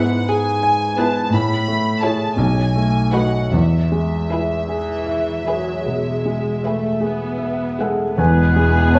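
A rubato 12/8 pulse carries this passionate, lyrical romantic movement for piano and orchestra, where an intimate, up-front grand piano with audible action noise shares the melody with smooth, lightly vibrato violins over a lush, distant second violin line, expressive violas and dark, woody cellos, before a clear oboe, airy flute ensemble, mellow clarinet, French horn chords and a very quiet double bass section join at 8.2 seconds, the whole set in a wet recital hall reverb.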